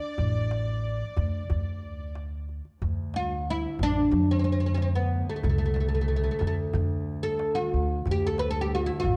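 Arabic maqam ensemble piece in D maqam rast at 91 BPM, passionate and warm, where an up-front, woody, plectrum-plucked oud carries the melody over pizzicato steel-string upright bass and a deep, close, dry clay darbuka, while a breathy, hollow ney and a distant, earthy bowed violin section hold a brief second line until 2.2 seconds, and a clear, nasal bowed double bass drone enters in the background at 2.8 seconds, all set in a dark production with light reverb.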